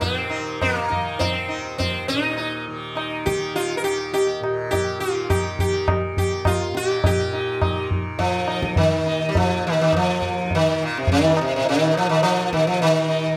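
Hindustani classical music in raga bhupali on Eb, this short cut from a longer piece moves at a steady 103 BPM in 4/4 with a radiant, meditative mood. The sitar carries the melody up front, its plectrum-plucked tone bright and buzzing, with sympathetic strings adding a shimmering halo and a slapback echo trailing each phrase. Beneath it, the tanpura holds a softly plucked drone on Eb, sitting well back in the mix with its own bright, shimmering, buzzing resonance. The tabla provides the percussion, low-tuned and ringing, with a compressed, saturated punch, and it falls away at 13.0 s, just before the sitar and drone close at 13.4 s. A modest small-room ambience keeps the trio intimate, and the music passes into a new section at 7.0 s.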